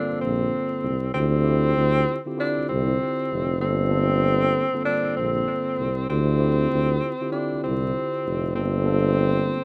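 A bright tenor saxophone and a mellow tine electric piano open this reflective, moody boom-bap hip-hop piece in D minor, with a tuba joining at 0.1 seconds. At 97 BPM in 4/4, the groove carries a gentle swing on the sixteenths as the harmony moves between Gm11 and Dm11. Up front, the saxophone takes the jazz-style melody in a narrow range, its present, filtered tone coloured by vibrato, breathy subtone, scooped notes and a touch of delay. Beneath it, the tuba holds the bass line in a smooth-topped, classical manner, sitting prominently in the mix. The electric piano stays clean and warm in the background, as if heard through its own built-in speakers. Light reverb, vinyl crackle and a rough home-demo quality give this brief cut from a longer piece a moody, reflective feel.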